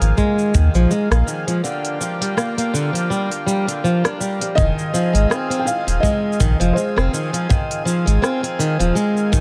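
Set in a moderate studio room with a short reverb, this wistful, autumnal folktronica excerpt swings gently as an up-front, boxy picked acoustic guitar plays filtered, delayed arpeggios over reedy accordion chords, a round sine sub bass, a tight kick and a clicky electronic kit of hi-hat, rim click and shaker, while a soft felt-muted upright piano with audible action noise carries a delayed melody from 4.6 s to 7.3 s.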